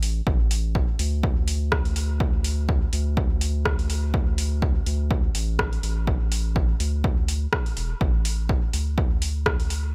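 A round, deep analog bass pumping under the sidechain opens this nocturnal, meditative dub techno passage at 124 BPM alongside a tape-warm deep house kit of metallic hi-hats and rim clicks with a gentle 16th-note swing, before a punchy electronic kick, captured in a large room, joins at 0.3 s, all set up front within a digital ambience.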